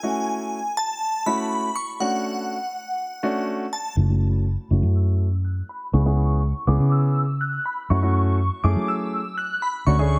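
A straight 4/4 pulse at 122 BPM drives this energetic, confident dance-pop excerpt in F# minor, cut from a longer piece. A shimmering, dreamy bell with a fast attack and chorus carries the melody high in its register from the start, while a warm grand piano supplies up-front accompaniment beneath it, both softened by a low-pass filter. The harmony moves from F#m7 to Dmaj7, then through F#m7, C#m7 and back to F#m7. At 4.0 seconds a dark, round, foam-muted electric bass enters, punchy and amped, as a build-up and filter sweep run to the end at 10.2 seconds. The parts sit in a small room ambience.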